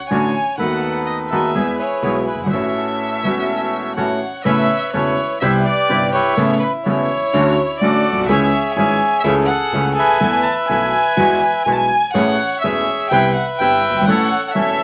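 A reedy, vintage-toned bandoneon carries the melody from the first moment, joined at once by a single warm violin playing a second line with vibrato and portamento, and by a brilliant, woody upright piano with long sustain sitting up front in the accompaniment. This playful, nostalgic tango excerpt moves at 125 BPM in 4/4 with a rubato feel in A major, while a second, airy bandoneon adds soft stabs in the background over chords that drift from Dmaj7 through Cmaj7 and Esus4 before settling on A at 14.1 seconds. The band sounds as though it is playing live in one moderately ambient studio room, with vinyl crackle lending an old-record patina.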